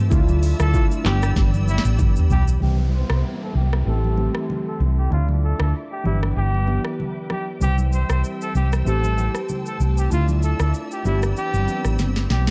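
A bright, punchy trumpet with scooped notes carries the melody from 0.6 seconds in this sunny, romantic afrobeats clip, over a round, hollow-body fingered electric bass and an up-front electronic drum kit with a deep kick, sharp snare, metallic hats and handclaps, while glassy digital keys with chorus, lush bowed strings with sidechain pumping, background congas and an electronic downlifter and swell from 2.6 seconds fill out a dark production where a filter sweep and drum fills mark the changes.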